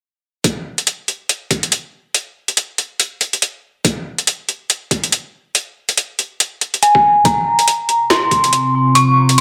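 An eerie, inharmonic FM synth bell with a warbling vintage tone stands out most, sitting up front between Ab5 and Db6 from 6.8 seconds, its decaying notes coloured by chorus, a low-pass filter and dub echo as a filter sweep runs through it. This brooding, meditative deep dubstep piece in F minor, cut from a longer work, moves at 141 BPM in 4/4 with a half-time feel and 59% swing on the sixteenths. From 0.4 seconds a layered, overdriven garage kit with a woody snare and metallic hi-hats plays up front over a gritty, thumpy sampler-style kick that is compressed, pitched down and re-recorded in a large room. The opening stretch rests on the drums alone until the bell enters, and a build-up begins at 7.3 seconds, where the harmony settles on an F5 chord. Near the close a deep, moody pad built from sawtooth, sine and triangle layers with a sub octave, wave folding and ring modulation swells in slowly, spanning C4 to F5 under chorus and its own reverb. 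A wet spring reverb hangs over the whole mix.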